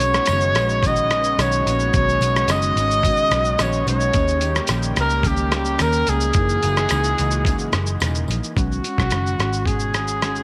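A straight 4/4 pulse at 109 BPM from a muffled, pitched-down sampler-style kit with a thumpy kick, hi-hat, rim click and shaker carries this dreamy, nostalgic indie and bedroom pop fragment in B major, where a clear, up-front trumpet sings the melody with vibrato through subtle chorus and tape echo over a dark, foam-muted picked bass, a mellow fingered electric guitar drifting in lush chorus, a thick detuned sawtooth pad holding chords in the background until 8.5 seconds, and a very quiet jingly tambourine, all bathed in moderate spring reverb as the chords move from B69 through D#7 and F#13 back to B69.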